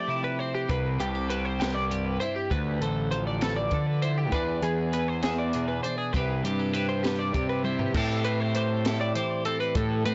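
A steady 6/8 pulse carries this bright, intricate math rock and midwest emo piece, where two twangy, compressed twelve-string electric guitars sit up front: one plays clean chordal accompaniment over ninth and seventh chords, while the other picks sparkling arpeggios bathed in analog chorus, tape echo and plate reverb. At 0.7 s a round, fuzz-soaked picked bass enters alongside a compact cocktail drum kit with dark cymbals, a high-tuned snare and a punchy kick, and a short drum fill at 7.7 s leads into a new section at 8.0 s. The whole recording sounds blown-out and overdriven, with a dull, rolled-off top and a light touch of reverb.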